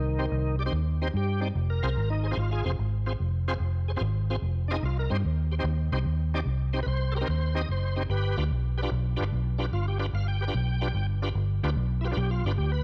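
An electric blues shuffle in C harmonic minor opens with a vintage muted fingered electric bass and a bright tonewheel organ playing together from the first beat, setting a smoky, soulful mood at 147 BPM in 4/4 with a swing feel on the eighth notes. The bass sits up front in the mix, its foam-muted, round tone dark and punchy as it holds down the low end between F1 and G2. Behind it, the organ supplies accompaniment from Eb3 to G5 with a full, shouting voice, lightly overdriven, its key click audible and its sound turning through a slow rotary speaker with chorus vibrato. The harmony moves from Cm to Fm at 1.6 seconds, returns to Cm at 4.8 seconds, and lands on G7 at 8.1 seconds. Light reverb gives the pair a little room, and this 12.8-second passage is cut from a longer piece.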